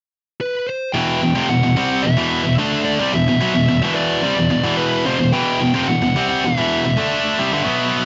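A rough home-demo mix with light reverb and a muffled top end carries this aggressive, epic metal fragment in E minor at 110 BPM: a dark, distorted high-gain lead guitar states the melody from 0.4 s, then a bright, up-front heavy guitar and a scooped guitar tucked in the background both enter on the riff over Em at 0.9 s and play through to 8.1 s.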